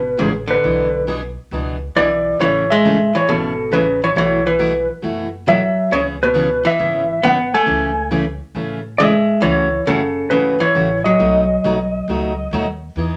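A clean, compressed lap steel guitar leads the melody up front with fingerpicks and slide, joined by a dark, hollow-body archtop guitar's second line and a woody, thumpy pizzicato upright bass, while a full-bodied jumbo steel-string acoustic guitar enters at 0.2 s with picked accompaniment and finger squeak, giving this short, down-home swinging country excerpt at 136 BPM its easy lilt over jazzy C#m7, Amaj9, F#m7 and B7 changes in a moderate studio reverb.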